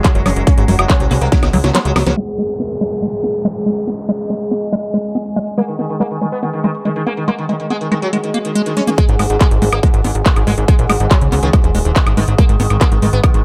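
A lightly reverberant, filtered mix carries this alien, psychedelic slice of psychedelic trance in G# minor, moving at 141 BPM in a straight 4/4 and cut from a longer piece. A punchy, up-front electronic kick and a plucky analog bass built from sawtooth and pulse waves drive the drop. The kick drops out at 1.4 seconds and the bass at 2.1 seconds, and they return at 9.0 and 9.1 seconds. Beneath them, a squelchy, resonant liquid acid bass riff runs throughout with chorus and tape echo, while an overtone-sweeping drone holds sustained chords with a slow attack and its own reverb. A drum and bass kit of cracking snare, metallic hats, handclaps and woodblock, tape-warm and re-recorded in a small room, plays the whole way. A drum fill leads into the middle passage, and a filter sweep runs across it. A bright, buzzing sitar with shimmering sympathetic strings carries the melody through phaser and dub echo. 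A downlifter opens the middle passage, and a swell marks the build back into the drop. The chords move from F#5 to G#5 at 2.2 seconds.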